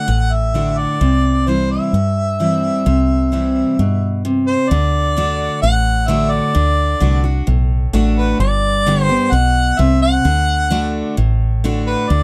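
A warm harmonica carries the melody in this easygoing, heartfelt stretch of honky-tonk and classic country, its vibrato-laden, jazz-style solo sitting up front yet with a distant, roomy air. Beside it, a picked steel-string acoustic guitar with a bright, full-bodied jumbo tone supplies the accompaniment, and both play from the very start. A round, dark fingered electric bass, foam-muted and amped for a direct feel, comes in at 0.1 seconds and sits a touch louder than the other two. The tune moves at 130 BPM in a straight 4/4 in D mixolydian, shifting from D to C early on, then starting a new section at 4.7 seconds that travels through D and G before returning to D. The dark production keeps reverb to a minimum, and the clip is cut from a longer piece.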